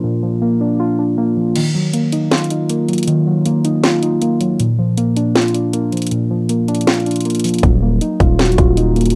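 Hip hop in a trap style, this menacing, hard-hitting piece moves at 158 BPM with a half-time feel in Eb harmonic minor, opening on muted, felt-like synth keys that carry a filter sweep, chorus, plate reverb and a cassette tape colour as the harmony shifts between Bb and Ebmadd9. At 1.6 seconds an up-front electronic trap kit arrives with a sharp snare, metallic hats and crash cymbal, its hard-clipped kick held back until 7.6 seconds, when a heavy, distorted 808-style bass lands on Eb1. Captured as a home recording on cassette in a moderate studio reverb, the soft, intimate darkness of the keys sits against the aggressive low end.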